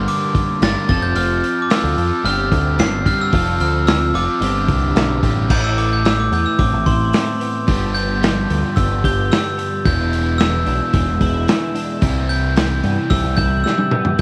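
Indie rock with a jangly, carefree mood, cut from a longer piece, where a bell-like, sparkling glockenspiel carries the melody over a twangy, clean twelve-string electric guitar with analog chorus and a crunchy overdriven guitar riffing with subtle chorus and slapback echo. A growling, round electric bass with overdrive sits up front beside a muffled, lo-fi vintage drum kit with dark cymbals and a tight kick, all with very little reverb. From 5.5 seconds the glockenspiel takes a solo over chords moving from Amadd9 through G7 and E7 to Cmaj7, and a drum fill closes the passage at 13.7 seconds.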